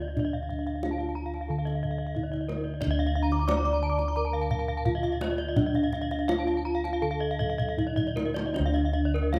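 Close, dry bossed gongs anchor this hypnotic, shimmering Balinese gamelan excerpt, sounding round, full and up front beneath a mellow bronze metallophone melody struck with padded mallets and touched by a slapback echo. Two horn-mallet metallophones spin ringing arpeggios above, one dark and smooth and the other with a vintage, band-limited tone, their paired tuning producing shimmering beats. A deep, distant kendang played with soft hands adds a fill from 7.6 to 8.5 seconds, all set in light reverb and captured with close, detailed microphones.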